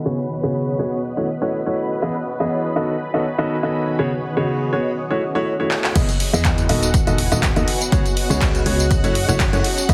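A clear, woody upright piano leads this energetic, bittersweet piano house cut, its short-sustain riff sitting up front with tape echo and sidechain pumping as a filter sweep works on it through the opening 6.0 seconds. Beneath it, a shimmering string machine holds sustained violin chords with ensemble chorus, and a cloudy granular pad adds a blurred, evolving texture with its own reverb, both pumping in time at 122 BPM with a light swing on the sixteenths. The harmony, in F# dorian, moves through C#7sus4, F#m7, Emaj7 and B7/D#. A drum fill at 5.7 seconds brings in an overdriven house kit of crash, handclaps, hi-hat and tambourine, re-recorded in a large room. The drop lands at 6.0 seconds with a dry, punchy analog kick, a round, mellow FM bass, and a very quiet, gritty sampler-style hi-hat and snare underneath. The whole mix carries a light digital ambience and a heavily compressed, radio-like sound with a low-pass filter, and the passage is cut from a longer piece.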